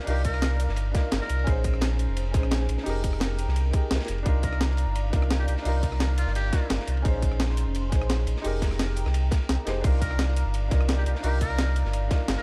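A trumpet with a metal mute carries the melody in a buzzy, thin voice with vibrato and a jazz inflection, playing in phrases that begin at 0.1, 4.4 and 10.0 seconds, each trailed by tape echo. This is a lush, rolling piece of liquid drum and bass in C minor at 172 BPM, cut from a longer piece, moving through Cm11, Bbm11 and Fm11. A felt-muted upright piano plays soft, intimate accompaniment with audible action noise and its own tape echo, while an airy, breathy pad sustains detuned chords with chorus in the background. Underneath, an up-front sub bass with octave gives a deep, full foundation. The drums stack an overdriven, tight electronic kick, a gritty, pitched-up sampler-style breakbeat kit with crash, hi-hat, rim click and snare, and a crunchy acoustic breakbeat kit with dark cymbals and a rolled-off top, high-pass filtered and set in studio ambience. Studio reverb gives the whole a dark, warm production.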